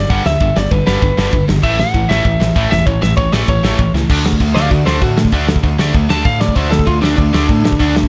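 A driving straight 4/4 pulse at 195 BPM propels this energetic, rowdy punk rock excerpt, cut from a longer piece. Up front, a loose, acoustic indie drum kit with a fat snare, tight kick, crash and ride cymbals sounds close and small-roomed, its top end rolled off, and a drum fill at 3.9 seconds leads into the second section. Beneath it, a growling picked electric bass, direct and amped with overdrive, anchors the low end, while two bright picked guitars, one a cranked overdriven stack and the other tight and distorted, play riffs further back in the mix. A lightly driven, slightly broken-up lead guitar, compressed and forward, carries the melody and takes a solo from 4.1 seconds to the end. The harmony moves from G to A, then lands on a D5 power chord as the solo begins, all wrapped in light reverb.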